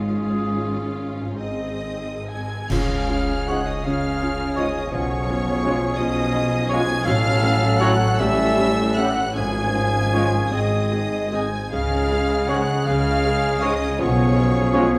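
A generous scoring-stage reverb surrounds this tender, serene passage from a slow romantic orchestral movement in Db major, flowing in a rubato 6/8 at roughly 39-57 dotted-quarter beats per minute. A clear, distant violin section carries the intense, lushly bowed melody high above a second violin line in the background, while a warm clarinet adds a gentle inner voice, a very quiet, close viola section fills in the accompaniment, and a ringing, fingerpicked concert harp spreads arpeggios underneath. Rich cellos and a focused double bass section anchor the bass, and a pure silver flute drifts in at 1.4 seconds. At 2.7 seconds a light-vibrato oboe and a dark bassoon join, as a brief accent of bright clash cymbals and concert bass drum marks the start of a new section. From 3.5 seconds a mellow, very quiet French horn section and a roomy trombone section hold sustained chords, while a trumpet places stabs in the background as the harmony turns through Db7/Cb, Gbm/A and A7 before settling back toward Db.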